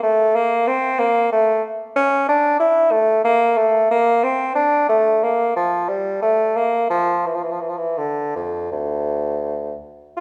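A lone, warm bassoon with light vibrato opens this grave, flowing excerpt of a baroque-style classical fantasia in D minor, moving in a free, rubato 3/4 at roughly 81-95 BPM and ranging from D2 to F4 as the wet reverb of a recital hall lends its voice a roomy, distant bloom across the full 10.2 seconds.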